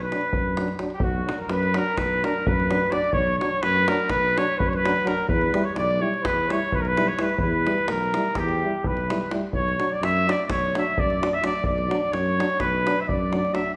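From the first instant, a vintage-toned trumpet carries the melody up front in this restless, fiery Balkan brass band fragment, joined by a punchy flugelhorn on a second line and a mellow tuba holding the bass. Trombone, euphonium and a deep davul enter a moment later, the drum sounding close and dry while the trombone offers a smooth top and the euphonium a soft attack, distant and roomy, both with light vibrato and sitting behind the horns. The music runs in 9/8 at 254 BPM counted in eighths, with a straight feel, in B harmonic minor. The harmony sits on B minor, moves to E minor at 5.3 seconds and returns to B minor at 9.5 seconds. All the brass play in a classical style, and a generous recital hall reverb gives the band a glowing, resonant space.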